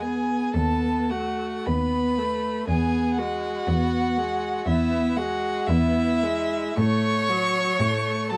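Rich, smooth vibrato in the first violin carries the melody high above the ensemble in this slow, lyrical romantic movement for string quartet in E major, an excerpt cut from a longer piece. Moving at around 51-61 BPM in 4/4 with a rubato feel, the four bowed players sound together from 0.0 to 8.4 seconds. The second violin traces a warm second line with soft attacks, portamento and a close, expressive tone, while the viola supplies focused, up-front accompaniment that still sits at a slight distance. Beneath them the cello anchors the bass with gentle attacks, sliding portamento and a rich, expressive voice. The harmony settles on E, passes through B7/D#, returns to E, and reaches F#m/A near 6.8 seconds, all wrapped in moderate studio reverb and a dark, warm production.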